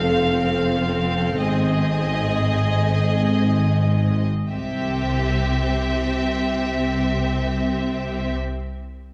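Cinematic string writing with an adventurous, triumphant mood, taken from a longer piece and played by lush bowed sections in a moderate scoring-stage reverb. Two violin sections carry the melody and a second line, one smooth and distant, the other focused, while an expressive viola section holds the accompaniment and an even cello section and a clear double bass section share the bass, with vibrato throughout the ensemble. The harmony moves from F to Ab at 1.4 s, then arrives on C at 4.5 s as the passage turns to a new section.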